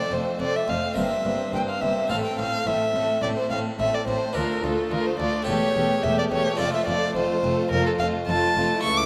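Stormy and dramatic, this 9.1-second excerpt from a baroque-style concerto movement with solo episodes moves at 107 BPM in a straight 4/4 in F major. Up front, a single warm violin carries the melody with vibrato, soft attacks and expressive portamento, reaching as high as D6. It sits above a very quiet, focused first violin section on the same line, while a second violin section plays sul tasto with light vibrato for an intimate, close sound. A dry, round, close-miked harpsichord in French style gives full plucked accompaniment alongside a viola section in the background, and from 0.1 s a rich double bass section and an expressive cello section, both bowed with vibrato, add the bass. The harmony passes from F through C7/G, Am, Dm and A7/E before settling back on F, and the whole ensemble is bathed in a wet concert hall reverb.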